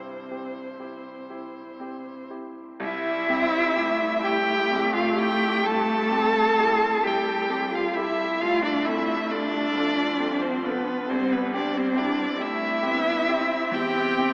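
A serene, slow romantic movement for piano quartet in C major opens with a focused, vibrato-laden violin melody up front over a rich, expressive cello second line with portamento, a softly attacked viola and a brilliant concert grand with deep bass, unfolding in a rubato 12/8 at 39-46 BPM and bathed in a vast cathedral echo heard through an AM radio sound.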